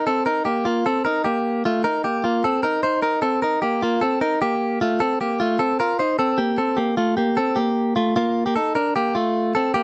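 A clean, twangy electric guitar, recorded direct and compressed with a slapback echo, plays alone up front in this bright, youthful indie pop excerpt at 152 BPM, its picked lines ranging from A3 to C5 over a Cm7 before shifting to a rootless Ebadd9 at 8.2 seconds, all captured in a dry, close 1970s-style studio sound with light reverb.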